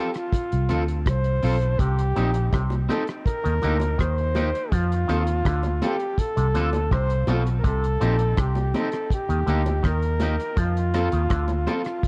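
Roots reggae at 82 BPM in a straight 4/4, serious and hypnotic, with an up-front flugelhorn singing a vibrato-tinged melody over a cloth-damped, thuddy drum kit, a round, foam-muted vintage bass, a twangy guitar at the edge of break-up with spring reverb, a nasal auto-wah clav riff entering at 1.8 seconds, and soft-handed low bongos in the background, all cycling through F, Cm and Eb in an echo-heavy, cassette-tinged mix cut from a longer piece.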